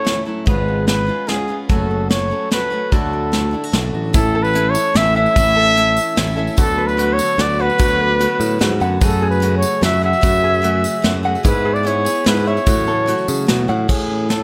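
In straight-feel waltz time, this uplifting indie folk excerpt builds around a dark trumpet melody with light vibrato and tape echo up front, carried by a punchy soft brush kit, a round picked electric bass and a picked steel-string acoustic guitar, while a bright fingerpicked steel-string guitar with finger squeak sits in the background until 4.1 seconds, when a faint, flute-like tonewheel organ on slow rotary, light ukulele arpeggios with tape echo and a jingly tambourine join, before the fingerpicked guitar returns at 13.9 seconds, all under light reverb.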